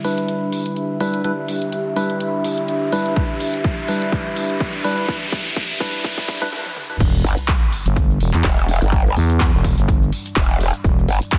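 A dark, detuned sawtooth pad holds an Em7 chord under hollow, organ-like stabs with chorus and digital delay, while an overdriven house kit of cracking snare, claps, hats, shaker, toms and crash drives a filter-swept build-up with a rising effect in this swaggering, gritty bass house cut at 125 BPM with a swung 16th feel. A punchy electronic kick enters at 3.2 seconds for the drum fills, and after a short break the drop lands at 7.0 seconds with an impact and sub drop. Two up-front, pumping basses come in alongside the pad and drums: a thick FM growl and a bright, wobbling, saturated growl, set in light reverb within a dense, heavily limited master.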